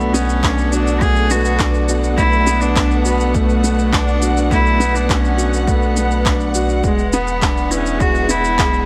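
Intimate and hypnotic, this short piano and strings electronica fragment pairs a clear, woody upright piano riff and a reedy, gut-string cello melody, both trailed by delay, over lush, dark symphonic string chords, a round sub bass with sidechain pumping, electronic shaker and handclaps, and a punchy layered kick that enters at 0.4 seconds, all in light reverb as Bm7 gives way to E7.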